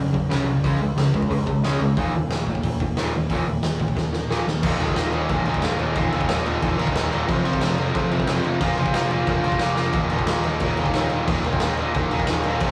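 A straight, driving 4/4 pulse at 180 BPM powers this rowdy, rebellious punk rock excerpt, with a raw garage drum kit of punchy kick, medium-tuned snare, hi-hat and crash cymbal sounding saturated and gritty in a pumping stone room, and adding fills at 4.0 and 9.8 seconds. Up front, a bright, double-tracked distorted electric guitar drives a picked riff over chords moving from Gb5 through Db5, Eb5, F5 and Bb5/F, while a growling picked electric bass, direct and amped with overdrive, sits underneath. The take has the rough feel of a rehearsal-room recording, with small room ambience and light reverb.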